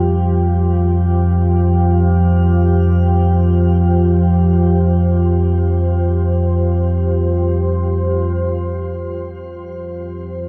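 A deep, rumbling drone sits up front from the first moment, its nasal, ring-modulated tone swelling in slowly beneath a dark, detuned pad that holds a single sustained chord softly behind it, thickened by chorus and shimmer reverb. Far in the background, a bronze singing bowl struck with a felt mallet adds a barely audible metallic ringing with slow beating. The whole 10.5-second ambient fragment, cut from a longer piece, floats in free time inside a cavernous cathedral reverb with a five-second tail, leaving a vast, ominous mood.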